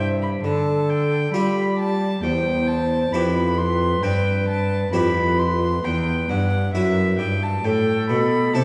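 Serene and radiant, this brief fragment of a baroque-style sonata movement unfolds in a straight, unhurried 4/4, with a single period-style violin carrying the melody in a nasal, gut-string voice that sits distant in the hall. Beneath it, a baroque flute traces a pure, wooden second line with vibrato and a crisp attack, while an Italian-style harpsichord with two sets of strings gives full, plucked accompaniment. A lone bowed cello, reedy and up front, anchors the bass, and the whole ensemble is heard from further back in a wet scoring-stage reverb.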